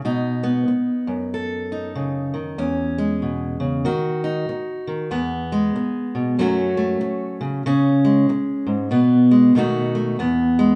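A fingerpicked steel-string acoustic guitar plays alone and up front, its warm tone carrying finger squeaks as it moves through a gently swung folk progression that resolves home at 10.2 seconds. The mood is peaceful and hopeful, and a wet, large-studio reverb gives the short passage a live, roomy feel with a softened top end.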